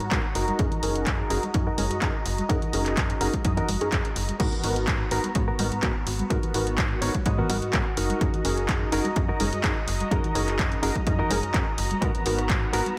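Filtered disco house at 126 BPM in 4/4, with a light 16th-note swing and a funky, sensual mood, this short cut from a longer piece rides a filter sweep across its full 13 seconds while the harmony alternates between F#6 and G#m9. A punchy analog kick, re-recorded in a large room, anchors the groove. It sits alongside a drum machine of crash cymbal, handclaps, hi-hat and rim click, with pumping sidechain on its hats and cymbals. A snappy, metallic FM bass with a slap-like bite carries the low end. A detuned sawtooth polysynth comp, mellowed by chorus and phaser, pumps and plucks through its chords. Background touches come from tambourine and congas played with soft hands in a small room and a twangy, direct-recorded clean electric guitar riff that breaks into a fill from 6.8 to 8.2 seconds. Above them, a clear symphonic string section holds sustained chords with light vibrato and a smooth top, and the guitar, bass, comp and strings all breathe with sidechain pumping and low-pass filtering inside a dreamy mix soaked in plate reverb.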